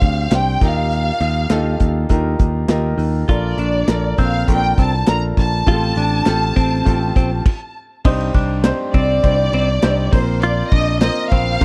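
This hopeful, anthemic piano-driven pop excerpt opens with a lush, expressive bowed violin section carrying the melody over a bright, woody upright piano, an up-front picked electric bass and a dark, smooth modern drum kit with a tight kick, while crisp handclaps sit in the background at a steady 101 BPM in Bb major. The piano plays a fill at 2.4 seconds, and at 3.3 seconds a clean, compressed electric guitar riff with phaser joins as the chords move through Bbmaj7 and Fadd9/A. A stop at 7.5 seconds leads into a new section on Cmadd9, all in a dry, close 1970s-style small-room sound.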